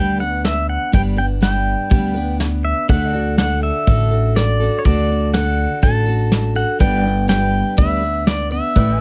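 A clean electric pedal steel guitar leads this short honky-tonk and classic country excerpt, carrying the melody up front with fingerpicks, slide and volume swells, its compressed tone glowing over a bright, full-bodied dreadnought acoustic guitar picking the accompaniment. A woody, thumpy upright bass on gut strings plays pizzicato close to the listener, and a soft brush drum kit joins at 0.4 seconds with a punchy kick, medium-tuned snare and hi-hat in a small, natural-sounding room. From 2.9 seconds a second pedal steel settles in the background with sustained chords, as the harmony moves from G to D and returns to G at 6.8 seconds. The mood is down-home and heartfelt, with a straight feel in four. Close, detailed microphones and very little reverb give the whole performance an intimate, present sound.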